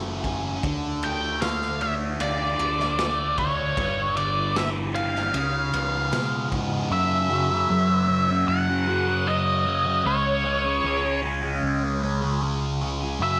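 A thick, bright fuzz guitar riff and a growling, overdriven fingered electric bass open this hazy, hypnotic psychedelic rock excerpt at 76 BPM in a straight 4/4. The double-tracked riff guitar sits up front, coloured by distortion and a phaser, while the bass carries a warm, direct-and-amped tone beneath it. A raw garage drum kit of boomy kick, medium-tuned snare and dark ride cymbal comes in at 0.2 seconds, sounding saturated and gritty with a rolled-off top and a pumping small-room feel, then drops out at 6.7 seconds. From 1.0 seconds a dark octave-fuzz lead guitar takes the melody high above the riff, pushed forward with wah, distortion and slapback echo. The harmony drifts from F#m7 through Dm, G5 and C#7 before settling onto F#5 and C#5 power chords in the second half, where guitars and bass carry on alone. Light reverb and a small room ambience frame the sound.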